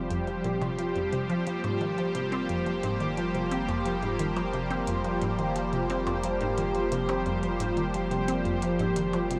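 Ambient, sequencer-driven space music at 88 BPM in a straight 4/4, this short excerpt, cut from a longer piece, feels mysterious and cosmic, built on an Fsus2 chord across its 9.4 seconds. Up front, a lush, airy unison pad of detuned sawtooths with a noise layer holds sustained chords with a slow attack, treated with chorus and phaser. Beneath it, a resonant blip pluck repeats a juicy, squelchy riff with a fast attack and short decay, colored by chorus, cassette tape character and delay. In the background, a vibraphone played with soft mallets rings out mellow, metallic arpeggios with a medium motor vibrato and delay, while a round sine sub bass sustains a deep F1 underneath. Clicky electronic hi-hats and percussion blips, re-recorded in a small room and sent through delay, fade in from 0.1 seconds, and a huge, wet ambient reverb with an 8.2-second tail bathes the whole mix in a vast, drifting space.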